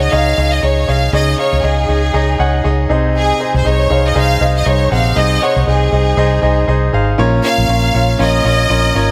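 Opening together, a bright, lush studio violin section carries the melody over a clear concert grand piano and a round, punchy muted electric bass in this hopeful piano-driven pop excerpt at 119 BPM in Db major, with a 56% swing on the 16ths, chords moving from Dbsus2 to Ab at 2.9 seconds and Bbm at 7.2 seconds, and a small room's light reverb around the up-front parts.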